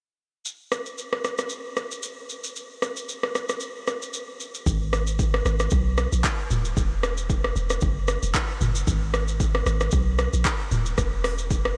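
Breezy and joyful, this short afrobeats cut from a longer piece rides a lightly swung 4/4 groove on an up-front electronic afro-pop drum kit, its deep kick, metallic hi-hat, handclaps, rim click, shaker and toms roughened by overdrive and a small-room character. At 4.7 seconds a boomy 808-style bass arrives, a dark sine tone with a fast attack, a decaying tail and a noise layer, holding the low end alongside the drums until the end. Light reverb gives the mix a touch of space.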